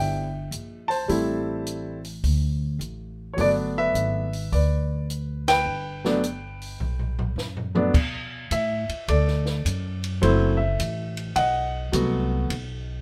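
Swinging and warm, this short cut from a longer jazz piano trio piece moves at 105 BPM in 4/4, with a polished, present grand piano carrying the melody up front over a woody pizzicato upright bass and a compact cocktail drum kit with dark cymbals, a high-tuned snare and a punchy kick, all in a moderate studio reverb, as the harmony runs from Cmaj9 through Am7 and Gmaj7 before a band accent at 5.4 seconds and a drum fill from 6.8 seconds lead into a second section of Bm7, F#m7b5 and B7 at 7.9 seconds.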